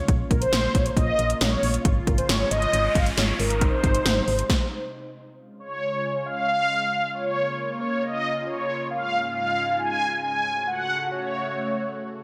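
A mellow synth brass carries the melody up front, its brassy, detuned sawtooth tone softened by chorus and delay in this upbeat, bright synth-pop excerpt cut from a longer piece. Beneath it, a phased analog pad sustains chords throughout, swirling and warbling with a vintage character. For the first few seconds, punchy, tape-warm 80s electronic pad drums drive a straight 4/4 groove with a punchy kick, a gated snare and metallic hats, while a solid FM bass adds round, dark low notes. A noise sweep drifts in the background from 2.3 seconds, and the bass and drums drop out by about 4.6 seconds, letting the brass and pad carry the second section alone. The chords move through Bbm, Db/Ab and Ab before closing on Gbm, all set in a lush hall reverb with a bright 1980s-style digital sheen.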